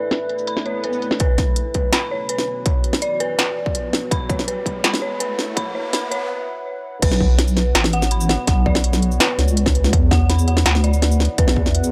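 This excerpt opens on a deep, moody ambient pad holding sustained chords in the background, carrying chorus, built-in reverb and vintage 12-bit sampler grit with sidechain pumping, while an eerie, detuned FM synth bell plays low-passed arpeggios through analog delay and a metallic, inharmonic drone hovers briefly until 1.2 seconds. It is a spacious, heavy piece of half-time drum and bass. An industrial kit of clanging snare, smooth hats, shaker and crash, all filtered and tape-toned up front, comes in almost at once, and a distorted electronic kick joins it at 1.2 seconds as a swell and riser push through a build-up with filter sweeps on the pad and bell. A short break follows before the drop at 7.0 seconds, where a deep, soft wobble bass built from square and sine waves comes in up front, compressed and chorused. The harmony moves between Bmadd9 and E5, with a dry, gritty hardware sound throughout.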